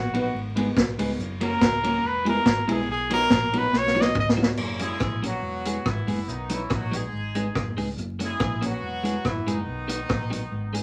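Ska in a cheerful, upbeat mood, cut from a longer piece: a clear, smooth-topped trumpet solo with vibrato leads over woody, boxy piano stabs, clean compressed electric guitar, a round, dark hollow-body bass and an up-front vintage drum kit with dark cymbals and a punchy kick, a drum fill arrives at 3.7 seconds, and from 4.8 seconds a warm ensemble horn section with light vibrato and octave doubling carries the melody, set in a small-room reverb with vinyl crackle.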